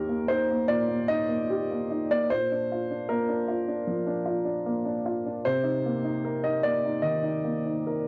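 A woody upright piano sits up front in this short neoclassical minimalist piece, playing solo for its full 8.1 seconds across a span from Eb2 to Eb5. The mood is peaceful and hopeful, set in Bb major at 75 BPM in 4/4, with a rubato feel that lets the pulse breathe. The harmony moves from Eb to Bb at 2.3 seconds and settles on Cm7 at 5.4 seconds. A cassette tape character colours the piano's warm tone, and the instrument is tuned to A4 = 442 Hz. It sounds like a home recording on cassette, with moderate studio ambience and a short room decay of about 0.5 seconds. The excerpt is cut from a longer piece.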